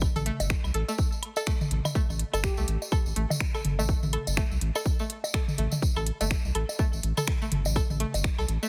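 Heavily compressed and radio-like with light digital reverb, this cool, sparse minimal techno cut in A minor moves at 124 BPM with a 16th-note swing, built on a round, deep analog bass with sidechain pumping and an up-front punchy electronic kick, joined by tape-echoed electronic claves, woodblock, toms and bongos, a jingly tambourine, a house kit of finger snaps and crisp hats, and a twangy, string-like resonator pluck riff with chorus and echo entering at 0.2 s, while a soft, dreamy lead touches a single G4 in the background at 2.4 s.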